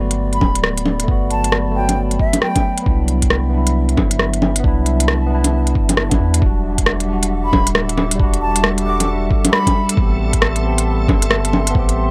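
A swung 135 BPM future garage groove in E minor drives this melancholic, ghostly piece, built on a muffled, thumpy electronic kick, a crisp, up-front electronic kit of bongos, hi-hat and rim click, and a deep, round sine sub bass that pumps against the sidechain. A clean tine electric piano coloured by 12-bit sampler grit, low-pass filtering and dub echo sits beside a dark, detuned, chorused tape-like pad, both pumping as the chords move through Gmaj7 and Cmaj7, then Em9 and Am7 from 6.4 seconds. A bright, airy baroque flute with a straight tone and delay plays brief phrases at the start and again from 7.5 seconds, while a faint reversed, granular texture drifts in the background from 7.4 seconds.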